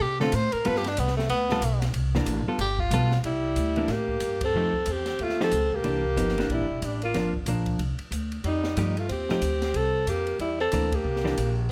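A brisk 4/4 swing drives this short cut from a longer small-group jazz piece in a swing and bop style, with a sophisticated, playful mood. The open acoustic drum kit keeps time on ride cymbal, hi-hat, snare and kick, with dark cymbals, a high-tuned snare and a boomy kick, while the pizzicato upright bass sits up front with a woody, thumpy gut-string sound. A clean, compressed hollow-body electric guitar fills in a fingered accompaniment with a dusky tone. The clear tenor saxophone, with light vibrato and a present sound, takes a solo turn over the opening 3.2 seconds before settling into a second line. At 3.3 seconds the alto saxophone enters up front with the melody, its soft attack and vibrato framed by plate reverb, and the band hits two accents along the way, all set in a moderate large-studio ambience.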